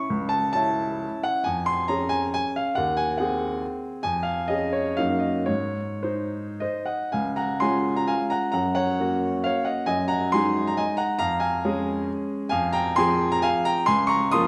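A clear, open baby grand piano, heard up front, carries this short romantic-era dance alone from start to finish, spanning a broad range from its low bass to its bright upper register. The music moves in a triple-time lilt with dotted rhythms and a flexible rubato, giving it a rustic yet proud character. Its harmony wanders through shifting inversions and a touch of minor colour before settling into a second section at 7.1 seconds. A wet recital hall reverb surrounds the instrument with a lingering halo. Cut from a longer piece, the passage ends on an unresolved minor chord at 13.9 seconds, as if the dance carries on beyond the cut.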